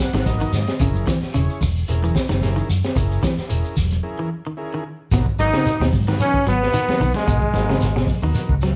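A brilliant, close-miked trombone takes the melody at 5.4 s with a growling, raspy alto saxophone tucked behind it, over a defiant, funky afrobeat groove in which a crunchy breakbeat kit with a punchy kick and a round, amped fingered bass drive beneath bright, clean arpeggios from a semi-hollow electric guitar, damped congas, a grainy shekere and a reedy vintage combo organ that opens with a fill, the band heard live in one room with light reverb and a break at 4.0 s in this cut from a longer piece.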